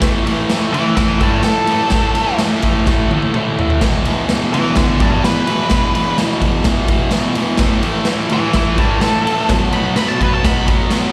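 A double-tracked fuzz guitar sits up front, playing a bright, picked riff between E2 and B3 with distortion and a slapback echo, moving through A5, E5, A5 and B5 chords. The raw garage drum kit is just as forward: a boomy kick, medium-tuned snare, toms, ride and crash, all saturated and gritty with a rolled-off top, set in a pumping stone room. A drum fill lands at 2.9 s, and the guitar shifts to E5 at 3.8 s. From 0.7 s an octave-fuzz lead guitar carries the melody higher up, darker in tone, with distortion and analog delay. This gritty, raw garage rock in straight 4/4 comes across as a live gig heard through the venue's PA, with light reverb, small room ambience and a recital-hall tail, cut from a longer piece.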